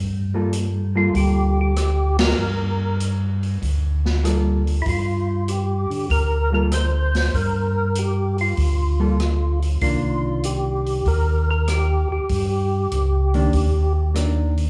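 A mellow tonewheel organ opens this smoky, late-night soul jazz organ trio excerpt, carrying the bass line with a round, dark tone, key click and a slow rotary speaker. A dark, clean hollow-body electric guitar and an open acoustic drum kit join almost at once, the kit offering hi-hat, ride, rim clicks, snare and a boomy kick, with shadowy cymbals and a natural studio-room sound. At 1.0 seconds a second tonewheel organ takes the melody, fat and percussive with third harmonic percussion, chorus vibrato and its own slow rotary speaker, sitting up front alongside the bass organ. The band hits a short accent at 2.1 seconds, and the swung groove at 97 BPM in G minor rests on a Gm9 chord before moving to Cm9 at 9.8 seconds. A moderate concert-hall reverb lends the trio a spacious, church-like air.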